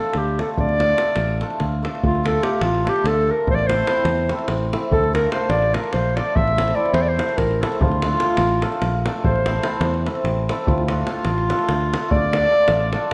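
Balkan wedding-band folk in a fiery, bittersweet D minor, driving along at 292 BPM in eighths in a straight 7/8, with the harmony swinging between D minor and A minor across this 13.1-second excerpt cut from a longer piece. An up-front, smooth-topped clarinet carries the classical-style solo melody over shimmering, ringing hammered cimbalom, tight vintage davul and a growly, direct-amped fingered electric bass, while a reedy, round, close-miked accordion slips in at 2.0 s as a very quiet second line in the same register as the clarinet. A moderate recital-hall reverb gives the band a sense of space.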